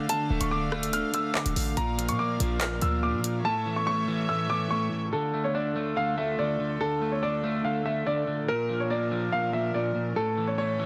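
A dense, heavily limited modern mix with light small-room reverb frames this menacing, cold drill excerpt at 143 BPM in half-time, set in D harmonic minor. An up-front concert grand with audible action noise carries the filtered melody, while a twangy, slightly broken-up electric guitar, also filtered, plays accompaniment and a distant sul tasto string section holds pure, floating chords. Electronic drums with bright hats, handclaps and rim clicks, together with a punchy, tight 808-style sine bass with a noise layer, play only in the opening and drop out by 3.4 seconds, leaving piano, guitar and strings to carry the Dm, Bb and A progression to the end.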